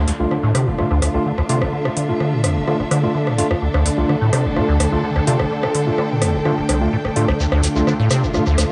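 Raw and hypnotic, this short acid house excerpt in straight 4/4 sets a squelchy, resonant square-wave acid bass riff with a filter sweep and dub echo up front over a booming, overdriven analog drum machine with metallic hats and rim clicks, gritty stabs from an overdriven tine electric piano, sustained chords from a rich chamber string section held back in the background, a lush symphonic string texture with vibrato and portamento, a faint bell-like FM electric piano note at 3.4 seconds, and a close, dry shekere entering at 7.4 seconds, all in an echo-heavy mix with a moderate echo-chamber reverb and a dark top end.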